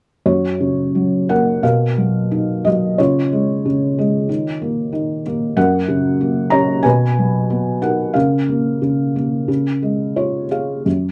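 Hopeful and relaxed, this brief excerpt of lyrical classical solo piano unfolds with an unhurried, rubato feel in which the beats stretch and settle unevenly. A felt-muted upright piano carries everything alone from 0.3 s to 11.1 s, its thick felt giving the tone a soft, mellow, intimate character. The instrument sits up front and sounds natural, with audible action noise adding a close, tactile presence. Near the end, a gentle fill on the piano arrives at 9.8 s before the passage closes. Light reverb and a dark, warm production wrap the playing in a cozy, subdued glow.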